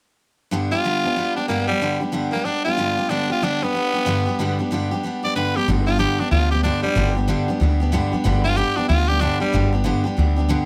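Rollicking and retro, this short rockabilly excerpt swings at 187 BPM in G mixolydian, opening with a bright, full-bodied picked steel-string acoustic guitar at 0.5 seconds and a raspy, gritty tenor saxophone carrying the vibrato-laden melody up front moments later. At 5.7 seconds a thumpy, woody upright bass enters with pizzicato gut strings to anchor the second section, while the guitar keeps picking to the end. Moderate studio reverb surrounds the trio.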